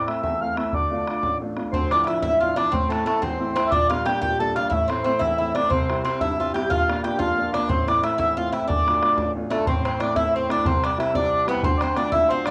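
Celtic folk jig in 6/8 and D minor, moving at 121 beats per minute in dotted quarters with a wild, spirited energy, cut from a longer piece. A reedy, mellow accordion carries the melody up front, its rich tone colored by cassette tape, while a clear, woody upright piano with a slightly detuned edge supplies the accompaniment from the very start. A boomy bodhran sits distant in the mix, sounding open as if in a large room. At 1.7 seconds an Irish bouzouki joins with a picked second line, its double strings giving a metallic shimmer. The chords circle around Am, Dm, C and Bb before closing on Dm, and the whole take has the snug, damp ambience of a small booth captured as a home cassette recording.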